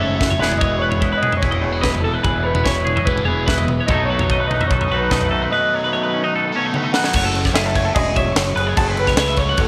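The crisp fusion drum kit sits up front with a high-tuned snare and punchy kick, filling at 0.4 and 6.7 seconds, driving this restless, wistful math rock and midwest emo passage at 147 BPM in 4/4, where a slightly broken-up guitar through a small old amp carries the melody, a bright twelve-string electric guitar spins compressed arpeggios, a fingered twangy guitar accompanies until 8.8 seconds, all three bathed in spring reverb, while an overdriven, double-tracked semi-hollow guitar plays a phased riff and a growling fingered bass adds grit over Emaj7 and B7 before shifting to F#m7 at 7.1 seconds.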